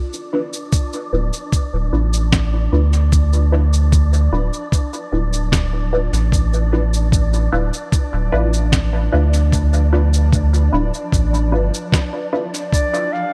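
A digital ambience surrounds this spacious, meditative ambient dub excerpt, which sits at 75 BPM in a straight 4/4 and rests on a single Dm69 chord in D dorian. A very quiet granular cloud pad holds blurred, evolving chords, while an airy, breathy wind-like tuned noise texture adds a dark layer with its own built-in reverb. Up front, a sampler-style electronic kick thumps with a compressed, pitched-down, tape-warm weight, and a muffled electronic cabasa and medium-tuned snare carry dub echo. A filtered dub chord stab adds muted, detuned sawtooth plucks colored by phaser, lush chorus and echo, and a deep, round sub bass with a fast attack sustains underneath. At 12.7 s a mellow, classical-style clarinet enters with a brief line carrying dub echo, just before the fragment closes at 13.3 s.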